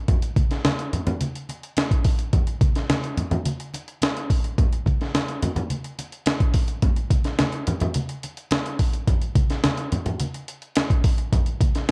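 A light reverb and cassette-tape haze frame this sly, cool funk excerpt at 107 BPM in a straight 4/4, where an up-front, gritty, pitched-up breakbeat kit with a thumpy kick, high-tuned snare and hi-hat, compressed and re-recorded in a large room, runs from 0.1 to 11.9 seconds over low-tuned, thick-skinned acoustic congas heard in a small room until 11.7 seconds.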